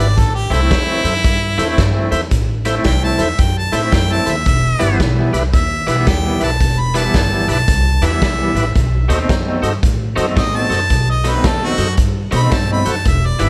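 Lightly reverberant and smoky, this excerpt from a longer electric blues shuffle has a mournful air, swinging at 112 BPM in 4/4 as the chords move from Am to Em to B7b9. A bright, overdriven, close-miked harmonica carries the melody with light vibrato and scooped notes over a fat, percussive tonewheel organ with key click turning through a slow rotary speaker, a twangy, slightly broken-up guitar riff with tremolo from a small old amp, and a woody, thumpy pizzicato upright bass. A raw garage drum kit, dark and up front with a punchy kick in a stone room, joins at 0.2 seconds.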